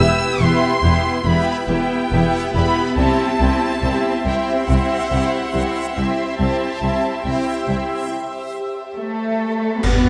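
A clear, focused violin section carries the melody close in this mysterious, eerie suspense cue, singing with vibrato high over a slow 70 BPM pulse in 4/4. Beneath it, a second violin line sits in the background with a rich, lush tone, while a smooth, even viola section holds the accompaniment up front and prominent. Cellos and a more distant double bass section anchor the low end with deep, bowed sustain, and a high, soft-attacked violin texture floats above everything with an expressive, smooth top. A reversed, swelling synth texture adds dreamy, detuned and granular shimmer with its own built-in reverb, sustaining the harmony as it moves from E minor to C. At 6.4 seconds a cymbal swell, bright clash cymbals and concert bass drum enter close and forward, leading into a break at 8.1 seconds and a full accent at 9.8 seconds in this excerpt cut from a longer piece, tuned to A4 = 444 Hz and recorded with detailed close microphones and light reverb.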